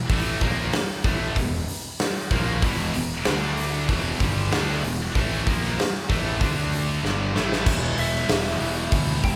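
Heavy and aggressive, this short hard rock excerpt in E minor moves at 95 BPM, with a big, up-front acoustic drum kit of crash, hi-hat, tight kick and medium-tuned snare driving three picked rhythm guitars: a bright, double-tracked high-gain guitar, a tight distorted guitar, and an overdriven semi-hollow guitar, all riffing in the background over a growly, punchy fuzz bass. The riff moves between E5, D5 and Em chords until a drum fill at 7.0 seconds, after which the high-gain guitar drops out at 7.7 seconds and a twangy, compressed, slightly broken-up lead guitar enters at 8.0 seconds for a brief high solo. The band sounds as if playing live together in one large room, with a moderate studio reverb.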